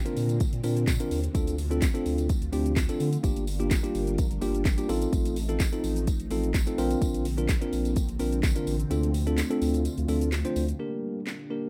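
Confident and driving, this dance-pop excerpt in G minor moves at 127 BPM, with a punchy, up-front house drum kit of cracking snare, metallic hats, handclaps and shaker, a deep, saturated sub bass, and a bell-like, bright electric piano pumping over dark string-machine cellos washed in phaser and ensemble chorus, a jingly tambourine tucked in the background, and the kick dropping out from 8.9 to 10.8 seconds in a rough home-demo mix with light digital ambience.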